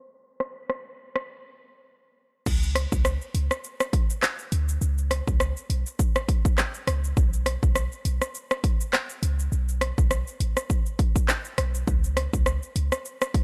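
A swung sixteenth-note groove at 102 BPM in 4/4 drives this tough, bouncy dancehall clip, cut from a longer piece and tuned slightly above standard pitch. An electronic pop drum kit comes in at 0.4 seconds with a punchy kick, bright hi-hats, handclaps, rim clicks, shaker and crash cymbal, all layered and produced and sitting up front. A filter sweep shapes the opening, and a break arrives at 1.3 seconds before the full groove lands at 2.5 seconds. There a clean 808-style bass joins, deep and boomy with a sine-like, mellow tone, a fast attack and a decaying tail, moving between A1 and D2 and also placed up front. The mix is dry, with a low-pass filter across the whole recording.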